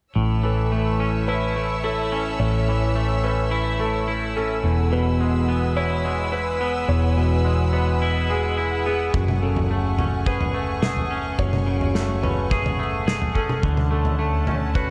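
A bright, twangy electric guitar sits up front, picking clean, scooped arpeggios through a lush chorus and analog delay in this euphoric, soaring post-rock excerpt at 107 BPM in A major. Beneath it, a hollow-body short-scale electric bass plays with a dark, round and punchy amped tone, while a felt-muted upright piano adds soft, intimate arpeggios with audible action noise and its own analog delay. A distant chamber string section holds sustained, bowed chords with rich vibrato, filling out the upper register. The harmony moves from A to Eadd9, F#madd9 and Dmaj7, and at 9.1 seconds a loose acoustic indie drum kit enters with a tight kick, medium-tuned snare and toms in a pumping small room. The whole mix is dreamy and soaked in a huge ambient reverb, giving the straight 4/4 groove an airy, expansive lift.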